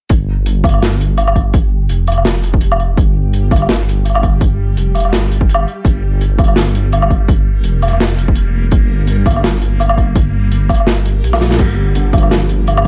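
A deep, rumbling detuned saw bass opens this heavy, spacious half-time drum and bass passage, sitting up front alongside a hard-clipped electronic kick and a crunchy breakbeat kit with a swung sixteenth-note feel. The acoustic-sounding kit is saturated and gritty, with dark cymbals, hi-hat, a medium-tuned snare, woodblock and a rolled-off top, all caught in a studio-room sound. From 1.1 seconds, a reversed, swelling texture drifts in quietly underneath, dreamy, bright and granular, with a long release and its own built-in reverb. The kick drops out at 10.9 seconds, and the drums play a short fill at 11.3 seconds. At 11.6 seconds, a felt-muted upright piano adds soft, boxy arpeggios through a delay, its action noise giving the close a mellow, intimate touch against an otherwise dry mix.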